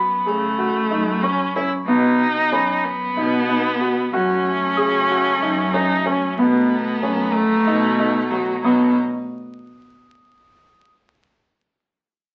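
Set in a brisk 7/8 at 186 BPM (eighths) with a straight feel, this hopeful, shimmering chamber piece in B mixolydian cycles between F#m and B chords, with a rich, focused solo viola carrying the second line over a cello bass played sul tasto with an airy bow and light vibrato. A grand piano spins arpeggios from 0.3 seconds, a bell-like, delicate celesta rings in the background, and a pure, floating string section enters with soft-attack sustained chords at 4.1 seconds. Everything sits in a wet studio reverb with the crackle of a very old 78 rpm record, and the celesta carries on alone after the other parts stop at 8.9 seconds, in this portion cut from a longer piece.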